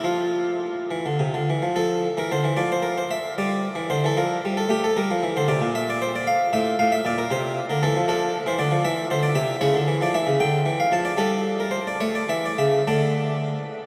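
Drenched in a huge, echoing reverb that makes the space sound vast, this brief classical passage features a solo harpsichord placed up front, its single set of strings giving an airy, plucked, round tone in the French style. The flowing, dance-like baroque suite movement unfolds in 6/8 with free rubato, turning toward a minor colour around 8.1 seconds before it is cut off from the longer piece at 13.7 seconds.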